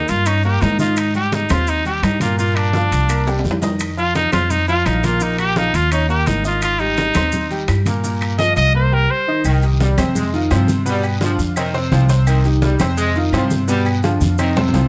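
A clear, punchy trumpet with a touch of vibrato leads this driving, danceable salsa excerpt at 170 BPM in 4/4, playing an up-front vintage-toned solo that runs until 9.4 s. Beneath it, a worn, slightly detuned upright piano supplies a bright accompaniment with long sustain and audible action noise, while a dark, thumpy pizzicato upright bass on gut strings sits prominently in the mix. Much of the percussion stays in the background: low-tuned, damped congas with a thick skin, ringing timbales and agogo bells, and a raspy guiro, joined by close, grainy maracas and very quiet, woody claves, while brief drum fills punctuate the groove. At 9.5 s the music settles into C harmonic minor, and a tight trombone section with a brilliant edge and light vibrato takes up a second line, moving through Cm, Fm7 and G7. Moderate studio reverb gives the whole band a lively, dancefloor-ready sense of space.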